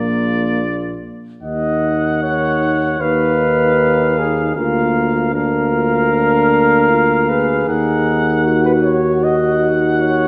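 Classical brass quintet music in Eb minor at 77 BPM, heroic and grave, cut from a longer piece, where a distant trumpet with light vibrato carries the melody over a mellow, smooth-topped flugelhorn second line, a close-miked French horn with vibrato and a dark trombone accompany in the background, and an up-front, vintage-toned warm bass trombone anchors the bass, all in a wet recital hall reverb as the harmony moves from Bb into Ebm at 1.4 seconds, through Bb/D and back to Ebm.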